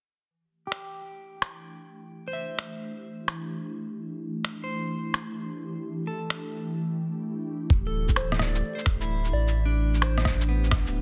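A dark, clean picked electric guitar opens this nocturnal, wistful future garage excerpt at 129 BPM with a swung 16th feel, filtered and tape-echoed alongside muffled, pitched-down finger snaps, shaker and rim click, an ethereal, airy pad pumps in at 1.6 seconds with phaser and chorus on a D9sus4, and at 7.7 seconds a thumpy overdriven kick and round sine sub bass arrive, joined briefly by a gentle, warbling FM keys-like lead tucked in the background.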